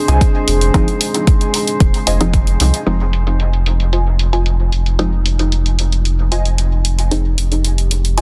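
An up-front, deep, layered kick drum anchors this moody, cavernous dub techno excerpt at 113 BPM in F dorian on an Fm7 chord until 2.4 s, alongside a round, sine-like sub bass, dark low-pass-filtered hats, a higher muted sawtooth dub chord riff with phaser, analog chorus and dub echo, a lower detuned filter-pluck stab with chorus, phaser and dub echo, a nasal, detuned analog pad sitting in the background, and a glassy texture of drifting overtones with built-in reverb that ends at 2.9 s, where a filter sweep on a stab begins; the pad, glass texture, bass and both stabs carry sidechain pumping within a dense, heavily limited master and digital ambience.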